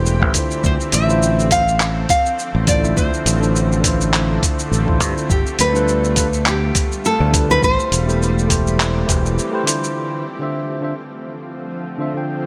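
A clean tine electric piano through a combo amp, with digital delay, opens this wistful sunset chillout excerpt alongside a shimmering, detuned ambient pad with chorus, and the two continue to the end at 12.5 seconds. A gritty, tape-warm sampler-style soul kit of handclaps, hi-hat and shaker joins with a thumpy electronic kick in a swung groove, while a growly, punchy fingered electric bass sits up front until 9.4 seconds. Over this, a full-bodied, fingerpicked nylon-string guitar with digital delay carries the melody, set in a light digital ambience.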